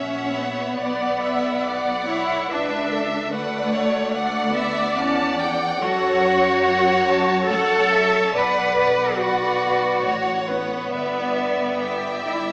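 An up-front cello section carries the bass with rich, smooth vibrato beneath a bowed violin section singing the tender, lyrical melody and a second violin section tracing a focused counterline, while a bright viola section fills the accompaniment and a lush double bass section anchors the depths, in a slow romantic movement for string orchestra in 3/4 with flexible rubato, heard through a wet scoring-stage reverb and a small-speaker sound, cut from a longer piece.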